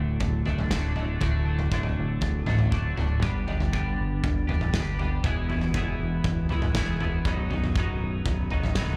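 Quiet-loud alternative rock at 119 BPM in 4/4, this cathartic, anthemic fragment from a longer piece is heard as a live club gig through the venue's PA, with small-room ambience and club reverb around it. A bright, twangy twelve-string electric guitar plays compressed, picked arpeggios up front with analog chorus and slapback echo, while a growling fingered bass adds overdriven grit underneath and a loose indie drum kit with a tight kick, medium-tuned snare and toms pumps in its small room from 0.2 seconds. The chords move from D to G, E and B across the 9 seconds.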